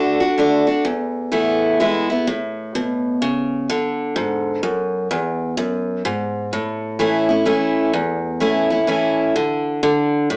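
A home cassette recording with a small-speaker sound and a wet studio reverb frames this brief, sunny country piece, cut from a longer work. A solo picked steel-string acoustic guitar, bright and full-bodied with audible finger squeak and an up-front dreadnought presence, carries the heartfelt mood in a swung 3/4 at 127 BPM in A major. The harmony moves from D through Esus4 and E to A, settling on a D5 at 9.4 seconds.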